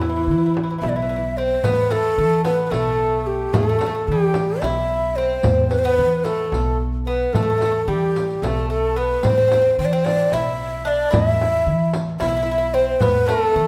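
Turkish makam ensemble music in E makam ussak, this hypnotic, longing excerpt moves in 7/8 at 222 BPM counted in eighths, with a breathy, up-front ney carrying the melody with vibrato and tongued notes over a metallic, picked Greek bouzouki second line and a woody pizzicato upright bass. A small frame drum played with soft hands sits close and dry, while a vintage, band-limited riq joins at 1.6 s with jingles set in the background. A wet recital hall reverb gives the ensemble the resonance of a church or concert hall.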